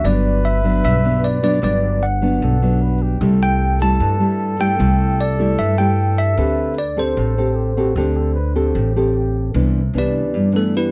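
A bright, bell-like tine electric piano carries the melody of this breezy, sophisticated bossa nova taken from a longer piece, shadowed by a dark, veiled bucket-muted trumpet with light vibrato until 9.5 seconds, when the piano steps into a brief solo over a Cmaj9 chord, supported throughout by a thumb-plucked classical nylon-string guitar and a woody, growly pizzicato upright bass in a dry, close 1970s-style studio sound.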